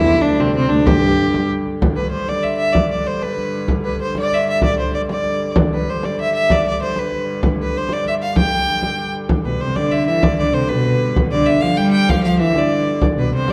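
Ancient and rustic in mood, this medieval dance moves in a straight 6/8 at 128 BPM counted in dotted quarters, centered on G mixolydian. A single bowed fiddle carries the melody up front throughout, its tone rich and focused with a light vibrato. Beneath it, a fretted viola da gamba plays a woody, ringing second line with its own gentle vibrato, sounding in the opening 1.5 seconds, dropping away, then returning at 9.5 seconds. A wheel-bowed hurdy-gurdy holds a reedy, nasal drone with an airy bow and smooth top, sitting low in the balance for the whole passage, while a deep, large frame drum, struck with hard hands and heard close, enters at 0.4 seconds. The recital hall reverb is wet and the production dark, giving this cut from a longer piece a sense of age and space.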